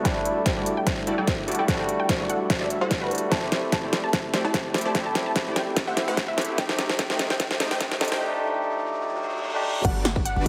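Future bass at 147 BPM in a swung half-time feel, this lush, bright build-up excerpt moves through Em11, D9sus4 and Cm6 before landing on Gmaj7, with a barky, clean tine electric piano, a detuned sawtooth supersaw stab riff and a lush unison pluck melody all pumping against the sidechain, while the piano and pluck trail delays and a deep, boomy 808-style bass sits very quietly underneath. Up front, a tape-warm dubstep kit with a deep snare, crisp hats and crash plays a drum fill through to 8.2 seconds alongside a punchy layered electronic kick, as filter sweeps run across the synths for the whole build. A riser enters in the background at 6.1 seconds and a reverse cymbal follows at 9.0 seconds, all set in a lush hall reverb with a heavily compressed, radio-thin sheen.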